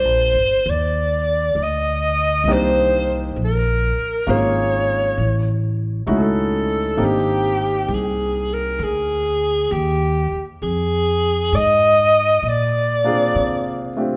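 Heard in the moderate reverb of a church or concert hall, this short cut from a longer jazz ballad has an intimate, late-night mood at a slow 66 BPM swing in 4/4. A mellow, breathy alto saxophone carries the solo melody with vibrato and scooped notes, sounding roomy, while a woody pizzicato upright bass with steel strings sits up front from the start. A natural-sounding baby grand piano joins with accompaniment at 2.5 seconds, over chords that move from Cm9 through Abmaj9#11 to Bb9.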